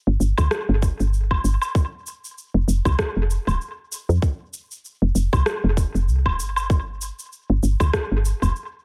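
A woody FM bass sits up front throughout this short cut from a longer organic downtempo piece, its soft, round tone striking quickly and then decaying, with sidechain pumping giving it a breathing motion between D1 and F2. The groove moves at 97 BPM in 4/4 with a 57% swing on the sixteenths, creating a hypnotic, mystical mood. A tight electronic kick drum, overdriven and re-recorded in a large room, also sits up front, entering at 0.4 seconds. At a lower level, an electronic shaker, woodblock and rim click carry their own overdrive and an analog delay, giving the percussion a gritty, repeating trail. The mix is dry and echo-heavy, and the whole passage holds one steady section of 8.8 seconds.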